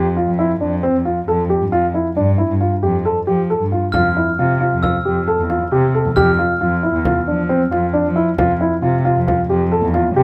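Moving in an uneven 5/4 at 135 BPM with a straight feel, this excerpt from a longer work of contemporary chamber music in F major feels shimmering and hopeful. A dark, mellow baby grand piano sits up front playing arpeggios in the middle register, while a single bowed cello carries the bass beneath it, its woody, nasal and slightly boxy tone colored by vibrato and portamento. At 3.9 seconds the harmony moves from Fsus2 to Fmaj7 with its third omitted, and two new parts join: a deep, large frame drum struck with hard hands, close and dry but set in the background, and a glockenspiel with brass mallets that adds bell-like, ringing high notes until 7.3 seconds. The drum continues to 10.1 seconds as the piano and cello carry through to the end of the excerpt. Light reverb and close, detailed microphones keep the sound intimate and clear.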